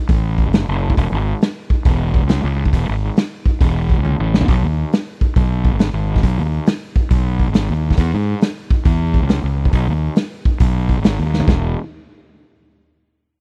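A fuzz-drenched fingered electric bass growls up front with overdriven grit, driving an excerpt of blues rock and southern rock at 137 BPM in E major with a swung 4/4 feel. A raw garage drum kit sits alongside it, saturated and dark with a punchy kick, medium-tuned snare and rolled-off top, throwing in a fill at 4.1 seconds and again at 11.3 seconds. The dry, close 1970s-style studio sound keeps the whole power-trio groove gritty and immediate.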